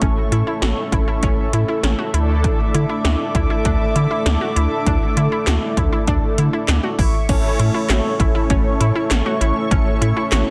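Wistful, nostalgic synth-pop excerpt in which a mellow, chorused synth brass carries the accompaniment over a shimmering pulse-width pad's sustained chords, bright detuned analog pluck arpeggios with chorus and digital delay, a round, deep analog bass up front, and punchy 80s electronic drums with gated snare, metallic hats, handclaps and crash, all moving from A to Dsus2 and back to A at 7.0 seconds in a dense, heavily limited mix with light reverb.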